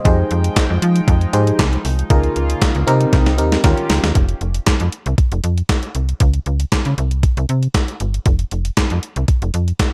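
A glassy, bell-like FM electric piano and a shimmering chorused pulse-width pad open this funky, danceable early-eighties boogie funk cut in F minor at 117 BPM over Fm9, Db69, Cm7 and Eb9 chords, joined at once by a snappy, metallic slap-like FM bass and a crisp, up-front 8-bit drum machine with thumpy kick, handclaps and snare, all treated with gated reverb, before a drum fill at 3.1 seconds hands the keys off at about 4.2 seconds, leaving bass and drums to drive a sparser, power-chord passage in digital ambience.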